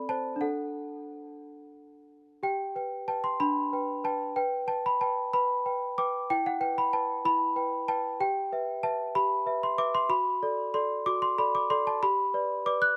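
Tender and innocent, this classical lullaby in G major sways in 6/8 at 62 BPM, with a solo celesta, bell-like and sweet from its hard felt hammers, sitting up front in light reverb and ranging from C4 to F#6 as its delicate harmonies move from D through Em to settle on G at 12.0 seconds, in a short passage cut from a longer piece.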